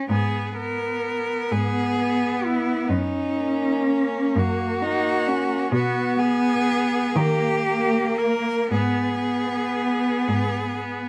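Melancholic and solemn, this classical piece for cello ensemble moves in a slow, lyrical 6/8 at 42 beats per minute, its uneven, rubato pulse giving the phrasing a breathing, unhurried quality in G# minor. Four bowed cellos, each a single player with vibrato, share the texture. The melody cello sings in its upper range, focused and up front with a smooth top, while a second line entering at 1.5 seconds adds expressive portamento and sits most prominently in the blend. Beneath them, an accompanying cello holds a narrow middle register with the same focused character, and the bass cello anchors the harmony with a soft attack and gliding portamento. The chords pass from G# minor through F# and G#m7/B to D# before returning home, all carried in a large studio room whose moderate reverb lends a gentle halo to this brief passage cut from a longer work.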